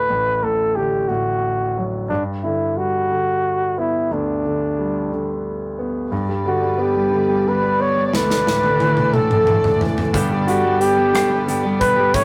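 Tender and romantic, this excerpt from a six-eight pop ballad opens with a breathy, mellow flugelhorn carrying the melody up front with scooped notes and light vibrato, over a clear concert grand piano whose deep bass, long sustain and audible action noise sit close and intimate. At 6.1 seconds a chamber string section adds soft-attack sustained chords played sul tasto, and at 8.1 seconds a polished studio drum kit enters with a fill, its tight kick and medium-tuned snare ringing in an airy room. At 10.1 seconds a clean, compressed electric guitar recorded direct joins with picked arpeggios colored by spring reverb, the whole heard in a stone room with the rough, saturated character of a rehearsal-room recording.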